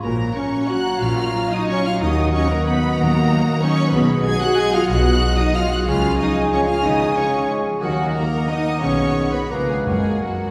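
In a rubato 3/4 that drifts between 151 and 201 BPM, this elegant, sweeping classical passage in F# major, cut from a longer piece, sets a lush, distant violin section singing the melody from F#5 to G#6 with expressive vibrato. Beneath it, a clear oboe, an airy flute section with lifted highs, a mellow clarinet and a smooth chamber violin section weave second lines, while a viola section fills the accompaniment and dark French horns join very quiet, soft-edged trombones in sustained chords. A bright, ringing concert harp spreads arpeggios over a bowed bass of double basses and portamento-inflected cellos, and calf-headed timpani enter only at 9.9 s as the chords resolve home to F#, all set back in a wet concert hall.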